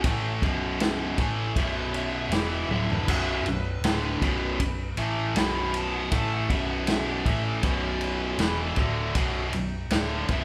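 A band playing live in one room comes across with light reverb and a gritty, heavy weight in this short cut from a longer blues rock and southern rock power trio piece, set in B minor at 79 BPM in a straight 4/4 and resting on a B minor chord. Up front, a tight, bright distorted guitar drives the riff low in its register, double-tracked and picked for a thick, biting edge. Beneath it, a vintage foam-muted electric bass played with the fingers sounds dark, round and punchy through its amp. The vintage acoustic drum kit has a natural studio-room feel, with a punchy kick, a medium-tuned snare, toms, crash and ride cymbals, and a rolled-off top, plus a drum fill from 2.7 to 3.1 seconds. Set in the background, a dark, smooth lead guitar with overdrive picks out a second line higher up, all four parts playing together through the full 10.4 seconds.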